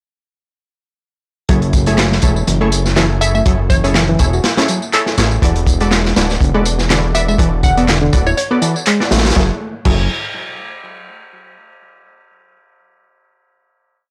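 A dry, gritty cassette-tinged recording with light reverb carries this swaggering breakbeat track, where from 1.5 s a saturated, looped and edited drum break with dark cymbals and a tight kick sits up front beside a machine layer of tambourine and handclaps, a fat, detuned sawtooth bass with long gliding notes, a reedy, worn, slightly out-of-tune electric piano riff roughened by overdrive and 12-bit sampler grit, and bold orchestra-hit-like stabs in dotted-rhythm chords, while a hollow, bouncy square-wave pluck adds short chorused phrases from 3.2 s until 8.5 s before the piece settles on a final chord at 9.4 s.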